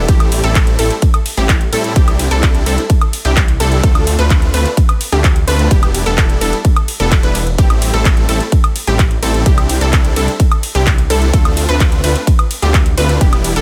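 Driven by a straight 4/4 pulse, with a punchy, up-front electronic kick and a layered big-room kit of handclaps, metallic hi-hats, ride cymbal and woodblock, this euphoric, emotional festival progressive house passage sets huge, airy supersaw chords and a thick, chorused detuned saw bass, both pumping with sidechain, beneath a bright background unison pluck playing arpeggios with ring modulation and a filter sweep, as the chords and pluck trail dub echoes through digital ambience and the harmony cycles from Am7 through Cadd9 and Dm7 to Em7.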